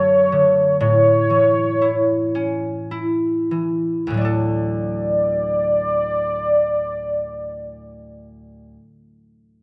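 A rubato lilt in 6/8 gives this brief children's lullaby, cut from a longer piece, a tender, sleepy sway that slows over its first 4.2 seconds. A velvety synth lead carries the melody up front from start to finish, its smooth, detuned unison tone softened by chorus and a gentle vibrato, with notes sustained above a narrow range. Beneath it, a concert harp supplies fingerpicked accompaniment, its acoustic strings ringing across a broad span from the low register upward. The harmony rests on a D chord over F#, moves to A, and returns home to D as the second section begins at 4.2 seconds. A moderate echo-chamber reverb wraps the pair in a small, intimate room, keeping the lullaby close.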